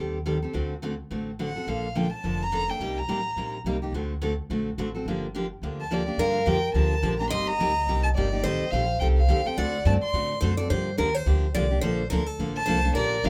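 A swung 4/4 pulse at 213 BPM drives this fiery excerpt of acoustic string swing in the jazz manouche style, set in G minor and tuned to A4 = 436 Hz. A bright picked steel-string acoustic guitar with fresh strings and audible finger squeak carries the accompaniment throughout, joined by a woody pizzicato upright bass on steel strings. A dark bowed violin, played sul tasto by a single player with light vibrato, a soft attack and a smooth top, takes the melody in intimate, close, up-front phrases that first enter at 1.4 seconds and return intermittently through the excerpt. At 6.2 seconds, as the music moves into its second section, a full-bodied dreadnought guitar, also picked and up front, adds a second line above the chords. The harmony circles through minor ii-V movements such as Am7b5 to D7 resolving to Gm7. A moderate club reverb surrounds the group with a short room sound.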